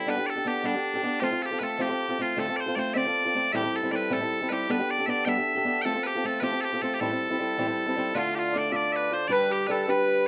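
A driving jig in a straight six-eight, this dark yet lively Celtic folk excerpt is led from the first moment by piercing, up-front bagpipes carrying the melody over boxy, fingerpicked swing-style acoustic guitar. At 8.1 seconds a reedy, close-miked accordion slips in with a round second line as the tune moves into a new section over minor and major chords. The band plays live in one room with a moderate studio reverb, and the fragment is cut from a longer piece.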